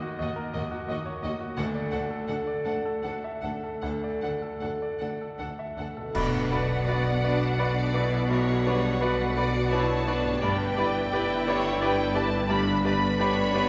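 Sorrowful and moving, this cinematic film-score passage for orchestra, cut from a longer piece, unfolds in B minor at a rubato 75-88 BPM in 3/4. An up-front, brilliant baby grand piano with audible action noise and short sustain carries the accompaniment, while a ringing, thumb-plucked concert harp plays arpeggios in the background. From 0.2 seconds a lush string body joins: a rich, distant violin section sings the melody over an intense second violin line with vibrato, a smooth viola section fills in the accompaniment, and a cello section and a focused studio double bass section hold the bass. At 6.2 seconds the music moves into a new section, marked by a bright accent from close, dry clash cymbals and concert bass drum that ends by 7.6 seconds. Around the same moment, a hollow, straight-toned flute ensemble, a light-vibrato oboe, a close-miked clarinet and a very quiet, mellow French horn section holding sustained chords join in. 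The ensemble sits in a wet church reverb that lends the recording a spacious, hall-like glow.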